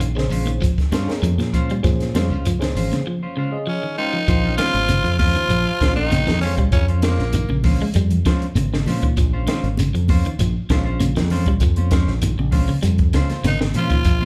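Afrobeat with a hypnotic, funky pull, this short excerpt is cut from a longer piece and played by a band live in one room with a moderate large studio reverb. A compact cocktail drum kit sits up front with a punchy kick, a high-tuned snare and a dark, rolled-off top, while close, dry congas with hard hands stay in the background beside a grainy, very quiet shekere. A round, punchy fingered electric bass anchors the groove, and two picked guitars weave around it: one at the edge of break-up playing arpeggios, the other clean and dark, playing stabs. A reedy, lightly overdriven electric piano with medium tremolo, heard through a combo amp, adds accompaniment only at the start and drops out at 4.0 seconds, during a break that begins at 3.1 seconds. At 3.7 seconds a breathy, raspy tenor saxophone takes the melody up front with vibrato, shadowed by a distant, veiled cup-muted trombone section on a second line, and both return briefly at 13.5 seconds.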